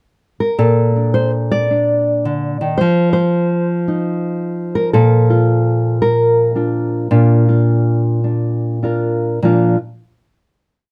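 A lone nylon-string guitar opens with a brief pickup at 0.4 seconds, setting a playful, sophisticated tone for this short, complete solo jazz piece in B-flat major. The tempo sits at 110 BPM in 4/4 with a swung eighth-note feel and a rubato looseness, and the instrument is tuned slightly under standard pitch, to A4 = 439 Hz. Played fingerstyle and sparsely with the thumb, the classical-sounding guitar spins a motif-based melody in song-like phrases, ranging from Bb2 up to D5 over a harmony that moves from Bbmaj7 to F5 and then settles on Bb. The guitar sits up front with a warm acoustic presence, captured by close, detailed microphones and surrounded by a moderate club reverb. The piece closes on a final chord that arrives at 9.4 seconds.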